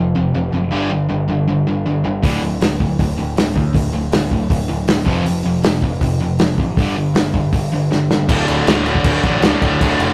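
A rough rehearsal-room recording with tube saturation and light reverb carries this urgent, raw punk rock excerpt in D minor at 158 BPM, opening on overdriven riffs from a bright distorted electric guitar and a sludgy, warm guitar in the background over a growling picked electric bass that sounds direct and amped. A loose indie drum kit, acoustic and up front with a tight kick, medium-tuned snare and rolled-off top, joins at 2.2 seconds and plays a fill just before 8.3 seconds. At that point a second distorted guitar, double-tracked, compressed and up front, adds its riff over the power-chord movement.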